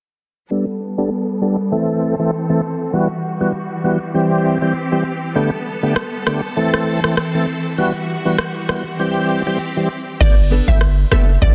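A lightly overdriven tonewheel organ with chorus vibrato and a slow rotary speaker opens this bouncy, summery dancehall excerpt in G major at 99 BPM with a swung 16th feel, alongside a bright, lush bowed string section that pumps under the beat as a filter sweep runs through the Gadd9–Am–Emadd9–C cycle. A booming analog drum machine with a deep kick, rim clicks and crash arrives at 6.0 seconds. At 10.2 seconds a punchy, heavy 808-style bass and a crystalline, detuned wavetable pluck with chorus and tape echo mark a new section, and a full-bodied, fingerpicked nylon-string guitar adds arpeggios with audible finger squeak at 10.5 seconds, all within a dense, heavily limited modern master with light digital reverb.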